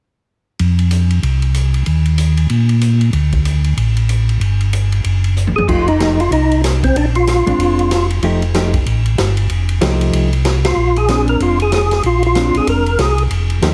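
Greasy and soulful, this swinging soul jazz organ trio excerpt moves at a brisk clip with a lilting eighth-note swing. A mellow, round tonewheel organ carries the bass line throughout, its dark, clean tone colored by chorus vibrato and a slow rotary speaker, while an acoustic big-band drum kit with a punchy kick, medium-tuned snare, ride, hi-hat, crash and toms keeps time in a natural studio room. During a drum fill, a second tonewheel organ takes the melody at 5.6 seconds, fat and lightly overdriven with third-harmonic percussion, key click, chorus vibrato and slow rotary swirl, playing two phrases in the middle register. At 5.7 seconds a clean, picked hollow-body electric guitar joins with compressed accompaniment, as the harmony settles into ninth chords after an opening of bare fifths and a brief break. A band accent lands just before the second melodic phrase, and the whole is framed by light reverb and a heavily compressed, radio-like sound.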